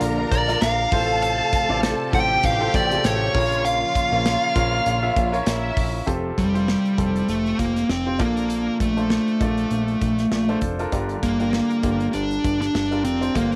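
A lightly swung sixteenth-note feel in 4/4 drives this anthemic, piano-driven pop excerpt. An acoustic drum kit with a punchy kick, medium-tuned snare and hi-hat sits in an airy small room, joined by a fat, detuned sawtooth analog bass with a filter sweep, while a clear, natural grand piano carries the accompaniment throughout. The most prominent part is an overdriven electric lead guitar, dark, smooth and picked, placed up front, which takes the melody from 0.3 seconds. For roughly the first 6 seconds, a lush, expressive violin section plays a second line over very quiet sul tasto strings holding soft-attacked sustained chords. Both drop away as the second section begins, where the harmony moves through Fadd9, Bbmaj7 and Gm7, and light reverb lends the mix a warm sheen.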